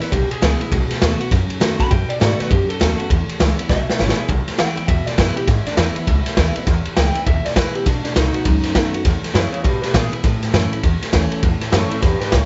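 A gritty, dark-topped studio sound opens this rollicking, rowdy rockabilly excerpt in E major at 202 BPM with a swung feel, where a twangy, slightly broken-up electric guitar with tape echo takes a clean solo over a bright picked dreadnought acoustic guitar, a woody pizzicato upright bass and a boomy, saturated garage drum kit up front in a pumping small room, with a drum fill from 3.7 to 4.3 seconds leading into the second section as the chords move from E and B7 to A.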